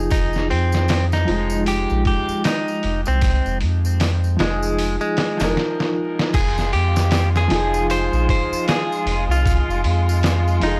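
A round analog bass and a clear, woody upright piano with harmonic tremolo and tape echo open this dark, cinematic trip hop excerpt at 77 BPM in F minor, joined at once by a bright, twangy clean electric guitar melody with its own tape echo, a pitched-down, gritty sampler-style drum kit with a thumpy kick, and an acoustic tambourine, before a drum fill at 5.6 seconds leads to veiled, muted chamber violins holding sustained chords from 6.3 seconds, the dry hardware recording carrying a layer of vinyl crackle.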